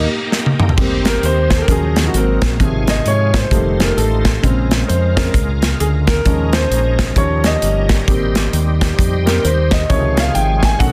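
Uptempo gospel in Ab major at 132 BPM with a swung feel, hopeful and soulful. It opens on a band accent as the grand piano and the drum kit, entering at 0.3 seconds, play a quick fill, then the intimate piano takes a solo from 0.8 seconds, its action noise audible, over a round, punchy fingered bass, crisp drums with bright cymbals and a tight kick, and a shouting tonewheel organ holding sustained chords through slow rotary speaker, light overdrive and chorus vibrato. The changes move from Abmaj7 through F7, Bbm7 and Eb7sus4 to Dbmaj7, with light reverb and small-room ambience in a dense, heavily limited mix.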